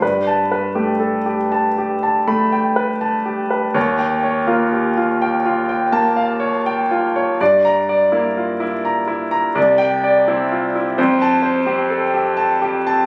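Wistful and nocturnal, this short excerpt of impressionist solo piano unfolds in a rubato 5/4 at about 82 BPM, cut from a longer piece. A bright concert grand carries everything alone from 0.0 to 13.1 seconds, ranging from C2 up to B5, with brilliant, polished upper tones, deep bass and long sustain. It sits up front and intimate, close enough that the action noise of the instrument is audible. The harmony drifts through colorful extended chords, opening on Gadd9, shifting to Eb9 at 3.8 seconds and Gm6 at 7.4 seconds, then moving through Cadd9 before arriving on Fadd9. A moderate recital hall reverb with a 1.7-second decay surrounds the instrument, while the phone recording captures some room ambience and a compressed, present sound.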